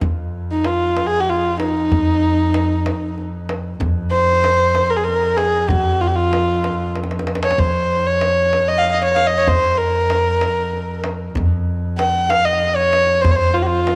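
A melancholic, hypnotic Persian modal ensemble piece in 6/8 opens with a very quiet, shimmering hammered santur that stops at 1.5 s over a thumpy pizzicato upright bass, an earthy bowed double bass drone and a deep, saturated tombak played with hard hands, before a close, intimate kamancheh takes the melody up front from 0.5 s with vibrato, portamento, an airy bow and tape echo, with a tombak fill at 7.0 s, all in a light studio reverb.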